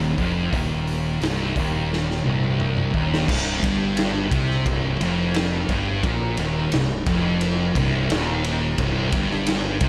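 Up front, a thick, double-tracked fuzz guitar picks a brooding riff over a growly, overdriven fingered bass and a raw garage drum kit with a tight kick and dark, rolled-off cymbals, whose fill from 1.9 to 3.3 seconds carries this ominous stoner and doom metal passage into its second section in a dry room.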